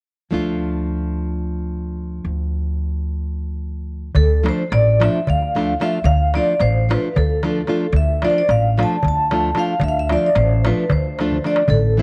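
Balkan folk in the Balkan wedding band style, restless and bittersweet in D minor at 222 BPM in 7/8, opens with dark, fingerpicked classical nylon-string guitar, with its finger squeak, and a woody, growly pizzicato upright bass up front, before a crisp, close, dry metal-shell darbuka played with soft hands joins at 4.1 seconds and a metallic, ringing vibraphone with fast motor vibrato and tape echo takes the melody up front at 4.2 seconds, a drum fill landing at 11.3 seconds in this cut from a longer piece set in light reverb and studio ambience.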